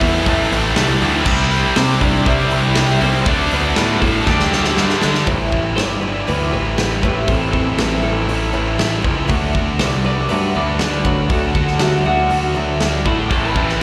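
Dark and cathartic, this quiet-loud alternative rock excerpt at 120 BPM opens with a huge arena drum kit, a punchy fuzzed bass up front, tight distorted guitars and a scooped, double-tracked high-gain guitar driving the riff under a twangy, lush-chorused twelve-string electric melody. After a drum fill at 4.3 seconds, the scooped guitar and one of the tight distorted guitars drop away at 5.3 seconds as a woody, boxy ladder-braced acoustic guitar picks arpeggios alongside a clean electric guitar solo, all heard live through a venue's PA with recital-hall reverb.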